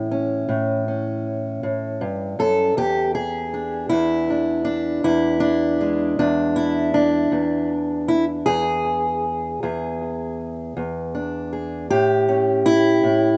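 A rough home-demo recording with light reverb and a touch of studio room sound frames this short cut from a longer acoustic country blues piece, rollicking and gritty in a straight 12/8 feel. A lone fingerpicked steel-string acoustic guitar sits up front, its boxy parlour tone carrying a hint of analog delay as it ranges from low bass strings up into the middle register. The harmony opens on A7, settles onto E7 at 2.8 seconds, and turns back to A7 at 11.9 seconds.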